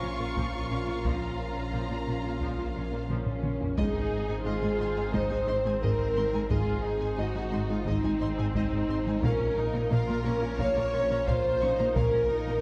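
Tense and vast, this cinematic hybrid film cue moves at 88 BPM in 4/4, shifting from Bb minor to Ab at 3.8 seconds and back to Bb minor at 9.2 seconds, with bowed violins carrying an expressive, vibrato-rich melody over a second violin line, clear violas, dark French horns holding sustained chords, and an evolving, bright pad washed in lush chorus. Underneath, a tight sequenced synth drives mellow arpeggios, while a thick, menacing detuned saw bass sits with very quiet cello and woody double bass sections, and a taiko ensemble struck with hard sticks rumbles in the background, capped by a fill before a smooth gliding synth bass riff enters at 3.8 seconds. The whole blend sits in a wet scoring-stage reverb, with the violas and roomy horns set distant and the ensemble feeling immense.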